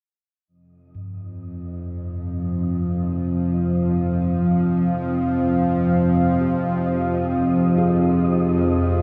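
Dark and ominous, this short cut from a longer dark ambient drone piece drifts in free time around an F minor chord, with a quartz singing bowl first appearing at 0.9 seconds, its pure, meditative ringing arpeggios sitting in the background under a diffuse ambient delay. A tense, string-like bowed drone enters low at 1.5 seconds and stays up front, joined by an airy, breathy wind-like tuned noise texture in the background and, at 2.3 seconds, a deep, warbling vintage pad of sustained chords with chorus. Everything hangs in a huge, wet reverb that lets each part bloom and linger.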